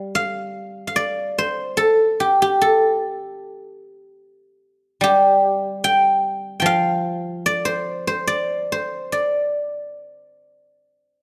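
Longing and elegant, this brief excerpt of Chinese traditional solo plucked-string music unfolds in a rubato 4/4 at roughly 65-76 BPM. A lone acoustic guzheng, played with fingerpicks, carries the whole performance from F3 to G5, its bright, silvery tones ringing up front. Close, detailed microphones capture the instrument with light reverb, lending the eleven seconds an intimate clarity.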